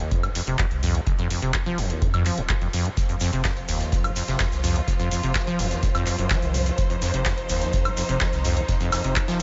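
Acid house at 126 BPM in a straight 4/4, this short cut from a longer piece feels trippy and driving. From the start, a squelchy, resonant sawtooth acid bass plays a saturated riff up front, colored by lush chorus, analog delay and sidechain pumping, over a round sine sub bass that also pumps. A deep, tape-warm electronic kick drives the groove alongside an analog drum machine supplying handclaps, woodblock and metallic hi-hats. At 3.0 seconds a muted string section enters with veiled, con sordino sustained chords, bowed with vibrato and a soft attack and pumping with the sidechain. At the same point a very quiet, gritty vintage acoustic kit adds hi-hat and a medium-tuned snare, joined by a grainy tube shaker. The mix sits in light reverb and small-room ambience, with its top end stopping at 7.7 kHz.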